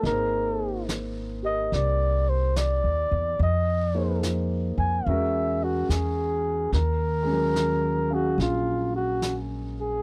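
A lazy swung 4/4 pulse from brushed snare and hi-hat on a vintage kit carries this smoky, melancholic jazz ballad fragment, where a breathy, mellow flugelhorn sings the melody up front with vibrato and scooped notes over a concert grand piano's open, long-sustaining chords and a woody, thumpy pizzicato upright bass, all captured in a dry, close 1970s-style studio sound.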